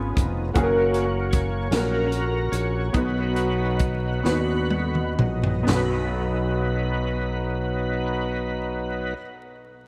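Reverent and hopeful, this slow gospel passage in B major moves in a 6/8 lilt at roughly 39-52 BPM, counted in dotted quarters, and it is cut from a longer piece. An overdriven tonewheel organ leads with a gritty, thick solo through the first 5.7 seconds, its up-front sound marked by key click, second harmonic percussion, chorus vibrato and a slow rotary speaker. An intimate, woody upright piano with audible action noise and a slightly detuned, short-sustained tone accompanies beneath it, treated with ensemble chorus, while a fingered electric bass adds a growly, punchy low end. A crisp fusion drum kit with a high-tuned snare, tight kick, hi-hat and toms breathes in a pumping small room, playing a fill from 4.3 seconds as the tempo slows, then falling away at 5.9 seconds. The harmony moves from C#7 to F# and settles on B, and the whole mix is dreamy and soaked in plate reverb, with a layer of vinyl crackle.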